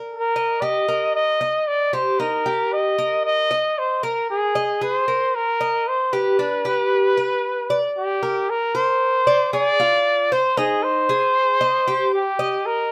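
A breathy, whispered trumpet carries an intimate, vibrato-laced melody up front over a picked Cuban tres whose metallic double strings spell out arpeggios in this sultry, dark Latin excerpt, with the harmony moving to new chords at 8.5 seconds before settling on C minor.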